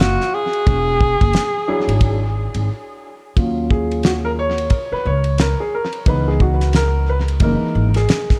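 Nocturnal and smoky, this jazz-hop excerpt opens with a breathy tenor saxophone playing a short subtone melody with vibrato and scooped notes, carried by tape echo. Beneath it sit a woody pizzicato upright bass and a cloth-damped, thuddy drum kit with a fat snare, tight kick and dark cymbals, both swinging on the 16ths. A dark, mellow upright piano joins at 1.7 seconds, and after a brief break from 2.7 seconds it takes a long-sustaining solo from 3.4 seconds over lush ninth chords in an echo-heavy, lightly reverberant mix.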